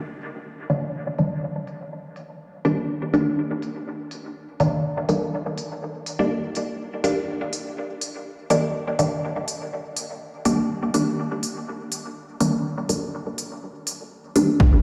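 Hazy and cavernous, this dub techno passage in steady 4/4 is cut from a longer piece and bathed in a huge ambient reverb that sounds like a big sound system playing in a bare room. Smooth, layered electronic hi-hats enter almost at once, low-passed and re-recorded in a small room, sitting faint beneath the mix. From 0.7 seconds a filtered dub chord stab on Ebmaj7 takes the foreground: a detuned, wave-folded blend of sawtooth, pulse and sine tones with a plucky fast attack and short decay, treated with phaser, sidechain pumping and dub echo. A filter sweep runs across both the drums and the stab through the opening section. Only at 14.6 seconds do a punchy, tape-warm analog kick and a deep, round sub bass of triangle and square waves arrive, the bass pumping softly in the background as the passage cuts off.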